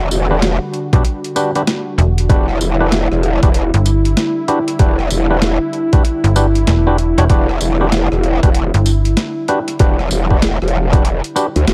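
A swung 96 BPM glitch hop groove in E minor struts along with swaggering, playful energy, driven by a gritty, thumpy overdriven electronic kick up front from 0.9 s and a sampler-style boom bap kit of hi-hat, rim click, medium-tuned snare and tambourine, all sitting over a single Em9 chord. A growling, wobbling growl bass with tube saturation rumbles in the low end alongside a snappy, metallic FM slap bass that plays until 9.2 s, while a stringy clav through a combo amp adds stabs with tape echo and sidechain pumping. A smooth, warbling vintage pad holds sustained chords beneath it all in a digital ambience, and the passage is cut from a longer piece.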